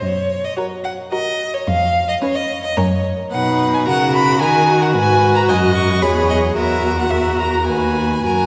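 Cheerful and graceful, this excerpt from a quick classical-period string quartet movement in B major moves in 3/4 at 110 BPM with a rubato feel. A clear, up-front single violin sings the melody with vibrato while a rich, smooth cello holds the bass from the start, and at 0.6 seconds a second violin adds a close, focused second line as a viola fills in the accompaniment. The bowed quartet sits in a church reverb with a long decay.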